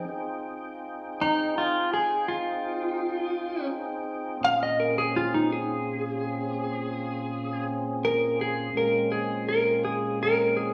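A brooding, soulful blues fragment opens on a fat, lightly overdriven tonewheel organ holding sustained chords, its key click and chorus vibrato audible through a slow rotary speaker. At 1.2 s a clean lap steel guitar enters up front with an electric slide melody, its compressed, fingered tone shaped by volume swells. The harmony settles on Fm7 before moving to Bbm7 at 4.4 s, carried in a 12/8 that feels straight. The organ sits warm and close in the mix beside the steel, which carries the solo voice through to the end at 10.7 s. A wet stone-room reverb and small-room ambience give the sense of a band playing live together in one space.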